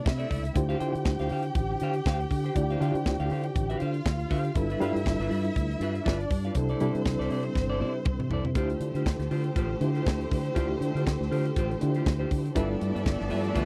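Disco with a danceable, driving groove, this short cut from a longer piece has a light swing on the sixteenths and a dry, close sound in the manner of a 1970s studio session. A tight funk drum kit sits up front with a high-tuned snare and a tight kick, and it plays a fill from 7.6 to 8.6 seconds as the music moves into its second section. A round, punchy fingered electric bass anchors the low end while a reedy, worn electric piano, slightly out of tune and shimmering with fast tremolo through its built-in speakers, carries the accompaniment alongside a bright, twangy clean electric guitar. A bowed string section with expressive vibrato adds a second line throughout. At 12.6 seconds a lush, focused second string section enters in the background with sustained chords, over harmony that cycles through rich extended chords such as Dm11 and G13.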